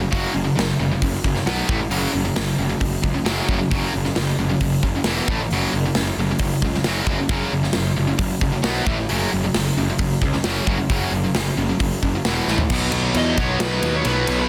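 Heavy metal in a dark, relentless vein, with a bright, double-tracked overdriven guitar riff up front over a growly fuzz bass and a punchy acoustic rock kit in a stone room, until a drum fill at 12.5 seconds drops the groove into half time and a warm, high-gain lead guitar melody enters at 13.2 seconds, the whole mix sitting dry in a dense, heavily limited modern master.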